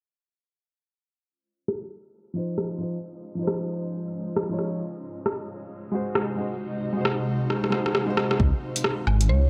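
Melancholic and wistful, this swung future garage fragment begins at 1.7 s with a deep house drum kit of metallic, overdriven hats, rim click and woodblock, soon joined by a dark, woody upright piano under a low-pass filter, tape echo and sidechain pumping, while a cloudy, granular pad fades in through its own reverb over Dbmaj9 and Ab7/C. A drum fill leads to 8.4 s, where a layered electronic kick and a rumbling, detuned saw bass with tube saturation arrive up front as Dbmaj9 returns. At 9.3 s, a round, mallet-like FM pluck with chorus sounds a single high note.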